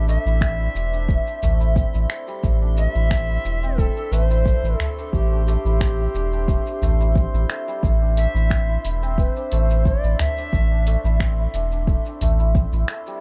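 A wooden, airy cedar flute with vibrato and a crisp chiff sings through digital delay over shimmering, hammered santur arpeggios roughened by 12-bit sampler grit, low-pass filtering and delay, a round, mellow sine sub bass up front, and a faint, glassy chorused texture of drifting overtones, while a deep house kit of finger snaps, hi-hat and shaker and a deep, tape-colored electronic kick set a straight 89 BPM pulse, joined at 1.4 s by a distant, band-limited udu, giving this mystical, earthy organic downtempo excerpt on Am7 in A minor pentatonic a dark, warm ambience until the flute falls away at 10.9 s.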